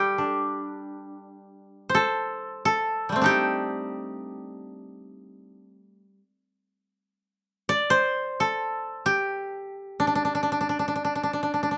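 In free time, this brief cut from a longer piece of Japanese chamber music unfolds at a calm, austere pace. Two kotos, both plucked with fingerpicks, carry the music. The melodic koto runs throughout, from 0.0 to 11.8 seconds, ranging from G3 to D5 with a dry, woody tone that sits up front. A second koto plays a mellow accompaniment in a lower range, G3 to D4, heard only from 0.0 to 3.1 seconds, after which the melody continues alone. A light reverb gives the sparse, acoustic sound a touch of space around its plucked notes.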